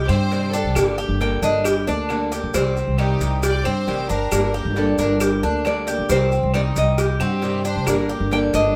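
A straight, danceable 4/4 groove drives this sultry Cuban son and guajira, with a thumpy, up-front pizzicato upright bass under a bright, fingerpicked nylon-string guitar melody complete with finger squeak, metallic double-string arpeggios on the tres, a boxy picked archtop guitar, a pure, floating sul tasto violin section on a second line, grainy maracas, and woody claves and a tight, high-tuned cowbell tucked into the background, all set in moderate studio reverb.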